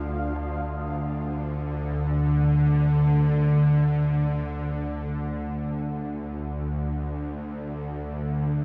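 Desolate and unsettling, this short dark ambient drone in D minor drifts in free time, led by an up-front, nasal, string-like bowed drone spanning D2 to D3 with vibrato and its own reverb, over a deep, barely audible pad of sustained chords, while very quiet, solemn tubular bells ring soft arpeggios around D4, all soaked in a lush hall reverb with a 2.6-second decay for a dreamy, uneasy haze.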